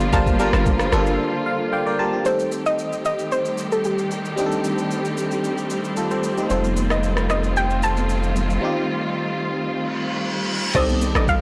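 Amapiano at 113 BPM in C dorian, this excerpt from a longer piece feels hypnotic and soulful, moving through Gm9, Cm69 and F9 chords. A biting, barking FM electric piano with chorus and a bowed string section, vibrato-laden and pumping under sidechain, hold the harmony throughout, while a smooth R&B kit with soft kick, rim click, shaker and crash carries a gritty 12-bit sampler edge. A hollow, bouncy log drum bass sits up front at the start and again near the close, joined by punchy, detuned chord stabs with chorus and delay in the background, and ringing, high-tuned congas played with soft hands. After a break where the electric piano takes a fill, a soft, round, dark pluck melody with chorus and delay enters at 2.3 seconds, and a deep sine sub bass rounds out the low end from 6.5 to 8.6 seconds. A reverse cymbal leads into the return of the stabs and log drums, and the whole mix sits in a lush hall reverb with a blown-out, overdriven character.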